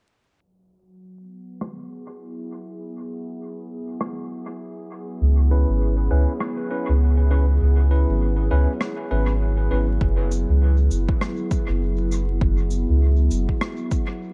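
A swung 4/4 groove at 100 BPM carries this deep, spacious ambient dub excerpt, with a dark, rolled-off rim click and cabasa soaked in dub echo from 1.6 seconds over a warbling, detuned tape-like pad holding chorused chords from F#9sus4 to C#m7 under a long filter sweep. A round, soft sub bass sits up front from 5.2 seconds while clean tine electric piano stabs echo through the middle, and at 10.0 seconds an overdriven electronic kick punches in over an F#5 chord. The whole excerpt sits in a small, echo-heavy room dusted with vinyl crackle and a low-pass haze.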